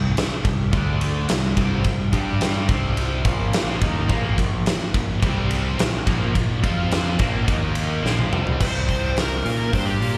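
Heavy and menacing, this short hard rock passage, cut from a longer piece, moves at a straight, steady pace in four. Two bright guitars, a cranked stack guitar with overdrive, phaser and slapback echo and a compressed distorted electric guitar, play riffs in the background throughout, while a growling picked electric bass with overdrive sits up front beneath them. A big acoustic rock drum kit, also up front, drives the passage with a fat snare, tight kick, crash and ride cymbals, hi-hat and toms, its sound coloured by a bright stone room. From 4.1 seconds a double-tracked, high-gain guitar adds a further distorted riff until 8.6 seconds, while a drum fill at 8.0 seconds leads into a short solo. From 8.6 seconds a smooth overdriven lead guitar with slapback echo carries the melody over a Csus2 chord, and the whole passage has the feel of a live gig heard through the venue's sound system with a touch of hall ambience.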